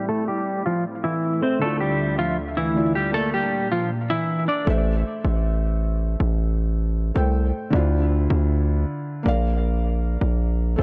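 Menacing, hard-hitting half-time hip hop at 157 BPM in A phrygian, where a bright, clean semi-hollow electric guitar melody and a mellow felt-muted upright piano, both soaked in dub echo, play alongside a flute-like, warbling pad under a filter sweep until 4.7 seconds, when the guitar and pad drop out and a saturated, distorted 808-style bass takes over beneath the piano through 10.8 seconds, all within an echo-heavy digital ambience over a repeating Am, Dmadd9, Bb progression.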